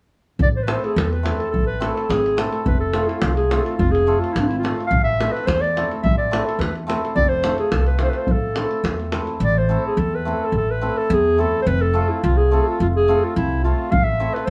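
Balkan folk in the manner of a wedding band, this restless, virtuosic excerpt moves at 107 BPM in a straight 2/4, with a soft-edged, dark clarinet carrying the melody up front in a classical style over a woody, thumpy pizzicato upright bass on gut strings. A shimmering hammered dulcimer rings out a bright accompaniment underneath, while a deep, vintage-sounding davul drives the rhythm until 9.3 seconds, then returns briefly at 13.9 seconds. The harmony sways between A minor and F in A harmonic minor, all set in a light reverb.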